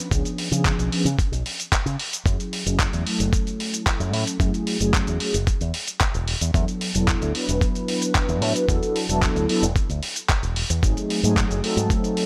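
A gritty, compressed sound in digital ambience drives this cosmic, sensual nu-disco excerpt in F# minor at 112 BPM, with a thumpy electronic kick up front and a dusty, sampler-style soul kit of handclaps, hi-hat and shaker sitting in a small room. A punchy, bright fingered electric bass runs through an envelope filter, while mellow synth brass, round and dark with a sawtooth and triangle edge, ring modulation, vibrato, chorus, tape echo and sidechain pumping, sustains chords from C#7b9 through F#m9 and E7sus4 to G#7b9. An analog polysynth filter sweep runs the full 12.3 seconds.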